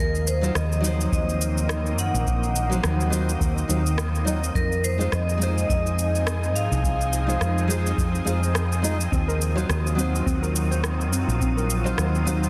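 A woody, growly fretless electric bass sits up front in this relaxed, smooth sunset chillout excerpt, its round, hollow-body tone anchoring a lightly swung groove. A bright, ringing vibraphone carries the melody with slow motor vibrato, its notes trailed by digital delay and shimmer reverb until it drops out at 7.7 seconds. Beneath it, a dark, fingerpicked nylon-string guitar supplies classical-flavoured accompaniment, complete with finger squeak, while an ethereal, detuned pad holds sustained chords through a gentle move from Ebm69 to Fm7 and back. Electronic cabasa and rim click, joined by a deep analog kick, keep a produced, small-room pulse, and an airy, breathy tuned noise texture hovers in the background. At 9.1 seconds a soft, round pluck enters with decaying arpeggios, all wrapped in a lush hall reverb and a dense, heavily limited modern master.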